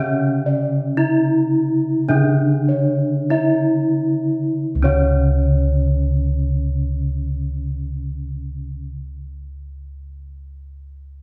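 Stately and hypnotic, this short gamelan excerpt moves in a straight four, slowing down over its first 4.6 seconds before settling into a second section. A bronze metallophone struck with a horn mallet carries the melody up front with a ringing, shimmering tone from its paired tuning and a boxy small-room colour, while a second metallophone played with a wooden mallet supplies the lower accompaniment. Bossed gongs add close, dry, full arpeggios above and a dark, smooth bass below, all set back in a wet recital hall.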